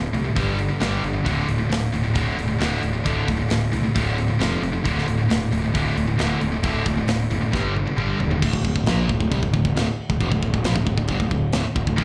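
Heard live through a club PA, this aggressive, epic heavy metal passage at 134 BPM in D minor pairs a bright, high-gain picked guitar riff with a dark, sludgy overdriven guitar, a growly fuzz-laden bass and an up-front acoustic drum kit with a tight kick, medium-tuned snare and rolled-off top; the high-gain guitar drops out at 8.4 s after a drum fill from 7.5 s, as the chords move among G5, D5 and F5.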